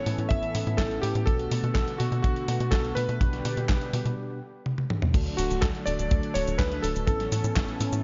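An up-front, clangy vintage electric grand piano carries the melody from the first moment, its notes trailed by delay, while a smooth, detuned sawtooth pad with chorus sustains chords in the background and a clean tine electric piano adds stabs from behind. This bittersweet, melodramatic italo disco fragment moves at 124 BPM in a straight 4/4, cut from a longer piece. A punchy, driving sequencer bass with a plucked, fast-decaying filter joins almost at once alongside an overdriven, sampler-style 12-bit drum machine of cabasa, handclaps, hi-hat, a medium-tuned snare, toms and crash, re-recorded in a large room. A dry, tight acoustic kick with a rolled-off top enters at 0.3 seconds and sits loudest in the mix. The harmony moves from Aadd9 through Bm7 and G/B, then a break arrives at 4.2 seconds with a drum fill leading into a new section at 5.1 seconds on D before returning to Aadd9. The production is dark and warm, with light reverb and a dimmed top end.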